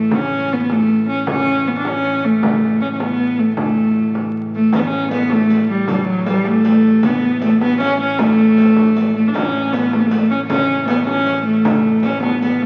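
A rich, up-front viola da gamba carries the festive, ancient melody of this medieval dance in 6/8 at 104 BPM in A major, bowed with light vibrato and an airy, ringing tone over a soft, hollow stopped-flute organ drone, a vintage frame drum in the background, and a riq with dark jingles entering at 4.7 seconds, all wrapped in wet church reverb and the crackle of a very old 78 rpm record.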